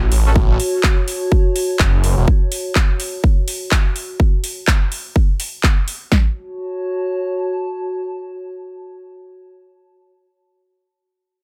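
Lightly reverberant digital ambience frames this aggressive, swaggering bass house cut, opening with a thick, swirling detuned saw bass, phased, saturated and pumping, that drops out at 2.3 seconds. Up-front electronic drums bring a punchy kick and snare with handclaps and metallic hi-hats, and the kick and snare carry on until 6.2 seconds. Underneath, a mellow, warbling lo-fi pad with a nostalgic tint, soaked in chorus and its own reverb and also pumping, holds on alone until 9.3 seconds.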